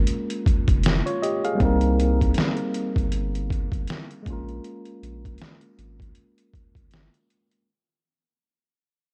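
The recording carries a cassette-tape character and a digital ambience, and the whole short clip, cut from a longer piece, fades out across its 7.7 seconds. It is a reflective, melancholic lo-fi hip hop groove at 79 BPM in 4/4, with a 16th-note swing of 56% and tuning set to A4 = 442 Hz. A sampler-style trip hop drum kit sits up front, compressed, pitched down and muffled, with a thumpy kick, a medium-tuned snare and hi-hat, all pushed through overdrive. Beneath it, a deep, thick sub bass with a triangle tone and saturated edge plays with a fast attack and sustained notes, stopping at 7.1 seconds. A clean tine electric piano, also up front, carries the accompaniment through cassette tape and a low-pass filter, sounding as if heard through built-in speakers. The harmony moves from Bbm7 to Cm7 at 1.6 seconds and returns to Bbm7.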